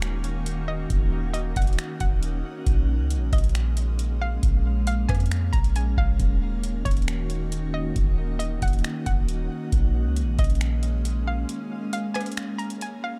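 This is atmospheric cloud-rap in Eb minor at 136 BPM, set in a half-time 4/4 feel with a melancholic, spacious mood, taken from a longer piece. A glassy FM pad holds slow-blooming, ethereal chords with ensemble chorus, its own reverb and a sidechain pumping effect, moving between Ebm7 and Bbm7. Above it, a hollow, nasal square-wave pluck carries the melody in a bouncy, detuned voice with a sub octave, treated with chorus, a low-pass filter and tape echo, sitting low in the mix. Up front, a soft, round 808-style bass anchors the low end until 11.4 seconds, while a booming analog drum machine drives kick, metallic hi-hat, rim click and finger snaps with a deep, roomy punch. A brief break begins at 11.5 seconds, and the drums drop out at 12.9 seconds, leaving the pad and pluck to close out the dry, close-sounding mix.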